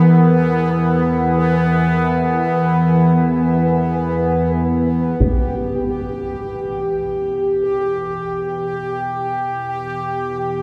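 Dark ambient drone in free time, cavernous and ominous, where a detuned, organ-like drone sits up front with a bubbling, resonant stepped-filter texture over an E5 chord, a very quiet sawtooth pad with a sub octave murmurs beneath, and a heavy-sticked taiko ensemble sounds briefly at 5.2 s, all washed in a vast cathedral reverb.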